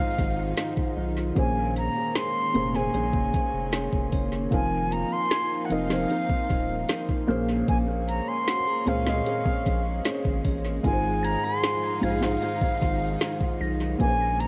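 Sensual and longing, this contemporary R&B excerpt in Bb minor moves at 76 BPM. An airy, reedy concert flute carries the melody up front over a soft, felt-muted upright piano with audible action noise, while thumb-plucked flamenco guitar arpeggios and lush bowed strings sit in the background alongside a faint, warbling FM synth pluck. Beneath them, a deep saturated sub bass joins a tape-warm drum kit with a knocking kick and a woody snare, whose 12-bit sampler grit and the tape echo on most parts give the cassette-toned, echo-heavy mix its hazy character.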